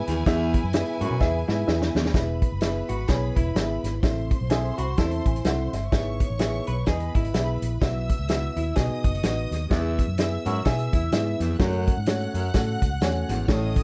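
Light reverb surrounds this short excerpt of uptempo 1960s-style soul in E major, swinging at 127 BPM with an uplifting mood. Up front sits a small-room drum kit with a tight kick and rolled-off top, joined by a round, foam-muted electric bass and a woody, slightly detuned upright piano that adds fills around 4.5 seconds, while a clean hollow-body jazz guitar plays a riff until 11.6 seconds. A bowed violin section with rich vibrato carries a second line, and a baritone saxophone with scooped notes plays its riff at the start and returns at 9.7 seconds.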